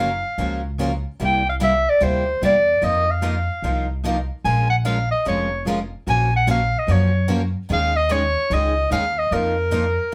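Virtuosic and swinging, this short cut from a longer jazz manouche performance moves with a brisk 4/4 lilt and a swing feel on the eighth notes. A bright, punchy clarinet takes the solo up front, its forceful jazz phrasing coloured by a light vibrato as it ranges from Bb4 to Ab5. Beneath it, two picked steel-string acoustic guitars supply the accompaniment, one a concert guitar with a warm tone and audible finger squeak, the other a boxy parlour instrument with a bright tone. An upright bass with gut strings sits forward in the mix, its pizzicato notes woody, dark and thumpy. The band plays live together in one room with moderate studio ambience, moving through chords such as Gbmaj7, C7, F7sus4 and Bbm7 before closing on F7sus4 at 9.3 seconds.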